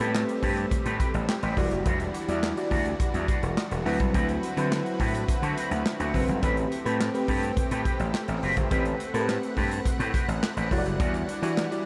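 A straight 4/4 groove at 105 BPM drives this slick, funky slice of early-eighties boogie funk in A dorian, cut from a longer piece. Up front, a modern studio drum kit with a punchy kick, medium-tuned snare, hi-hat and handclaps sits in a pumping room, while a gritty, overdriven slap bass plays bright and direct beside it. An FM electric piano with a soft pad layer supplies detuned, fast-attack chords with chorus, adding a short fill from 0.7 to 1.9 seconds. A clean, twangy electric guitar picks a riff through an envelope filter and lush chorus, and a thick sawtooth unison pad holds slow-blooming sustained chords with a long release. The harmony moves from Am9 through Em9 and D13, returns to Am9 and then settles on Em9, all set in a dreamy mix soaked in huge ambient reverb.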